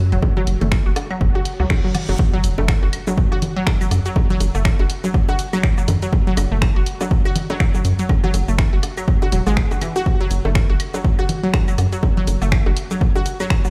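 A rubbery, hollow square bass pumps up front beneath a squelchy, bright resonant blip pluck washed in chorus and tape echo, joined by a tape-warm punchy kick, analog drum-machine cabasa, snaps and hi-hat, and layered bongos, congas, woodblock and claves through digital delay, while a reverse cymbal rises in the background into an impact at the drop at 2.2 seconds, giving this clinical, quirky minimal techno cut, heard through a big system in a bare stone room, its swung groove.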